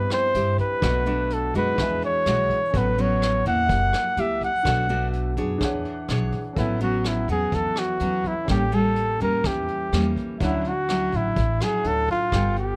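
A straight 4/4 bossa nova groove sets a sunny, relaxed mood as an up-front flugelhorn carries the melody with scooped, jazz-style notes, soloing through the first 6.6 seconds over bright, fingerpicked nylon-string guitar with audible finger squeak, a woody, growly pizzicato upright bass, a vintage brush kit with punchy kick, hi-hat and rim click, and an intimate concert grand piano tucked in the background, captured dry and close in this short excerpt.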